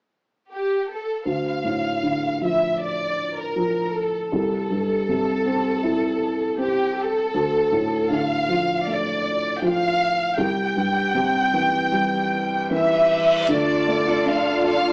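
A straight 4/4 pulse carries this longing, emotional pop piece, where a lush, vibrato-rich violin section sings the up-front melody from 0.5 seconds over a dark, woody upright piano, an electronic reverse cymbal sounds at 12.5 seconds, and at 13.5 seconds a distant, expressive string section with portamento holds sustained chords while a full-bodied picked steel-string acoustic guitar adds arpeggios, the whole band sounding live in one room through wet, large studio reverb with a small-speaker character.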